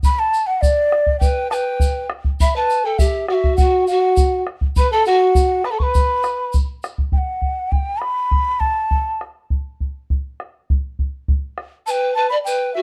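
A dark production with moderate studio reverb frames this brief cut from a longer Andean folk piece, melancholic yet festive in a straight 2/4. A large wooden quena carries the melody up front, breathy and mellow with vibrato and a crisp chiff, while a hollow bamboo pan flute adds a tongued, straight-toned second line from 1.2 s. A deep, close bombo drives the pulse until 11.7 s, a grainy, distant tube shaker sits faintly beneath it, and the flutes and shaker return briefly at 11.9 s.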